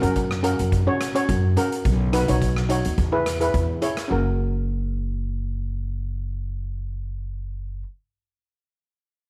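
A mellow steel pan, played as double seconds with soft rubber sticks, sits up front with a shimmering, metallic yet vintage, band-limited tone, carrying the accompaniment from 0.0 to 7.8 seconds in this carefree, sunny calypso in F# mixolydian. Beside it, a woody, thumpy upright bass with gut strings is plucked pizzicato, its dark acoustic sound also placed up front and running through the full length. A street-band drum kit with an airy, polished, big-room sound and a boomy kick adds hi-hat and rim click until 4.1 seconds, leaving pan and bass to carry on together. At 106 BPM in 4/4 with a light sixteenth-note swing, the chords move from F# to B and E before returning to F# as a new section begins at 4.1 seconds. Light reverb and small room ambience surround this short cut from a longer piece.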